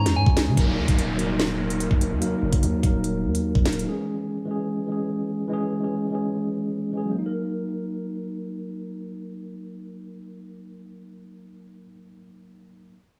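Drill hip hop in a dark, cold mood, this half-time excerpt at 146 BPM sits in Eb phrygian, moving between Dbm and Ebm, with a mellow, clean tine electric piano up front through a low-pass filter, playing from the start until 13.0 s. A very quiet, smooth detuned sawtooth pad with chorus touches in only for the first half second, while a deep, long, sine-like 808-style bass with a fast attack and a decaying sustain holds beneath until 3.8 s. A drill kit of knocking kick, sharp snare and crisp hats punches up front until 3.9 s, alongside an electronic downlifter from 0.6 s, all set in light digital reverb.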